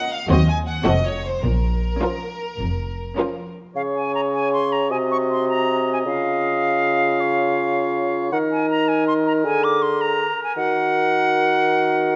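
This dramatic, restless passage from a fast romantic orchestral movement opens in Bb minor at 106 BPM in 4/4, with the violin sections carrying a lush, vibrato-rich melody over a smooth second violin line and distant, bowed violas. The cellos sit in the background and the double basses stand up front, giving the low end an expressive, full weight before the strings fall away. At 3.8 seconds the music turns to Db major and the woodwinds take over. An airy, bright silver flute plays a second line up front with a straight tone and soft attack. A dark clarinet and a classical-style oboe play second lines beneath it, while a mellow, roomy bassoon supplies the accompaniment. Close, detailed microphones keep each section clear within a moderate scoring stage reverb.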